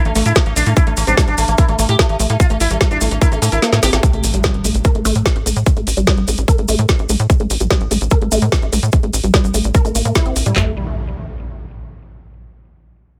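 An intense, psychedelic stretch of psychedelic trance in straight 4/4, cut from a longer piece and built over an A5 power chord. It opens on a drop where a buzzing, shimmering sitar carries the melody through phaser, tape echo and sidechain pumping until 4.0 seconds, while a woody, warbling wave-folded pluck runs its dark riff with chorus and echo. Underneath, a tight, punchy sequencer bass drives up front, and two layered electronic drum kits play with woody snares: one, loud and up front, brings a tight kick, handclaps and toms, the other adds metallic hi-hats, and grainy maracas sit close and dry in the background. A very quiet, detuned formant-sweep wobble bass adds a second line from 1.1 seconds, and the kick drops out for a drum fill just before an electronic impact at 4.0 seconds opens a stretch where a filter sweeps over the synth arpeggio sound. At 10.6 seconds the harmony gives way and a final impact closes the passage, all set in a digital ambience.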